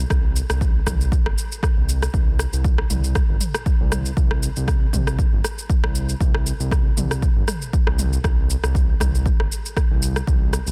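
Warm and driving, this afro house excerpt moves at 118 BPM with a light 16th-note swing, built on a smooth, gliding sawtooth-and-square synth bass with sidechain pumping alongside an up-front, punchy overdriven kick, while a layered deep house kit of rim clicks, shaker and toms adds gritty texture in a digital ambience under a dense, heavily limited modern master.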